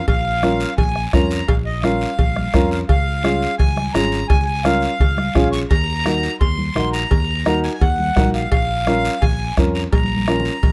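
A driving cumbia groove in straight 4/4 at 171 BPM anchors this passionate, brief cut, built on a close, soft-beater bombo, ringing metal-shell cowbell and timbales kept dry, bright thin-skinned congas sitting in the background, and a raspy guiro. Beneath them, a fingered electric bass gives a dark, round and punchy low end. A reedy accordion carries the melody with a slow beating tone that stays smooth and dusky. A warm, woody upright piano with short sustain joins at 0.4 seconds, placed up front and bathed in plate reverb as it fills in the accompaniment. The harmony moves through Bbm, Db and Ebm before returning to Bbm in Bb minor, and a drum fill arrives at 9.9 seconds. The whole has the light reverb and rough feel of a home demo mix.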